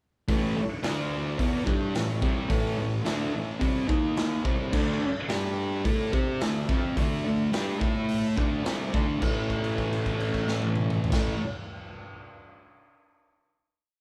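A thick, dark fuzz guitar leads this short, swaggering garage rock piece, double-tracked and up front as it picks a distorted power-chord riff in A mixolydian at 107 BPM in a straight 4/4. Beneath it, a raw acoustic drum kit pounds out a garage stomp groove with a punchy kick, a medium-tuned snare, hi-hat, toms and crash, its saturated, gritty sound sitting up front with a rolled-off top and a pumping, bright stone-room character. In the background, an overdriven vintage combo organ holds mellow triad chords in quarters, colored by a light vibrato. The harmony moves through A, D5, D#5, G5 and A5 before the riff gives way at 9.2 seconds to a final A chord that rings until 11.4 seconds, with a note held until 11.1 seconds. The whole band plays live in one room, wrapped in a moderate large-studio reverb that gives the raw performance its space.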